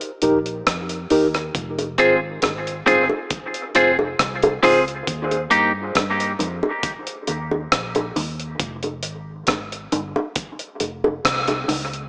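A gritty, compressed sampler-style drum kit opens this hypnotic, heavy dub reggae fragment, its thumpy kick, hi-hat and rim click carrying dub echo. It is joined almost at once by a dark, round, foam-muted electric bass sitting low in the mix and by mellow, reedy electric piano stabs with fast tremolo that drop out at 4.8 seconds. Tight, high-tuned bongos played with soft hands enter at 1.8 seconds, and a bright, twangy clean electric guitar plays up-front accompaniment until 5.7 seconds, both treated with dub echo, while an echo chamber reverb and a small-speaker sound colour the whole as the chords move between Eb and Fm.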